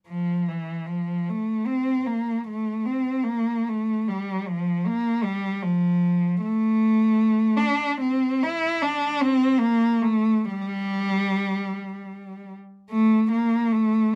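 Unfolding in a free, rubato pulse, this yearning and mournful classical excerpt features a single bowed cello playing alone and up front from 0.1 to 14.1 seconds in its middle register, its rich, vibrato-laden tone shaped by soft attacks and expressive portamento within a light reverb.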